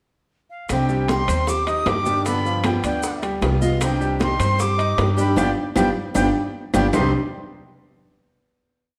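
An airy, distant jazz flute carries a sultry, motif-based melody over a danceable Cuban son and guajira groove at 154 BPM in C harmonic minor. From 0.7 seconds it is joined by a thumpy up-front upright bass tumbao, a full-bodied fingerpicked nylon-string guitar harmony mostly in sixths, a picked archtop guitar strumming with muted slaps, and congas, bongos, timbales, claves and grainy maracas. A brilliant grand piano montuno in octaves arrives at 0.9 seconds. Everything sits in a wet, large studio reverb, with a band accent and drum fill before the final chord at 6.9 seconds.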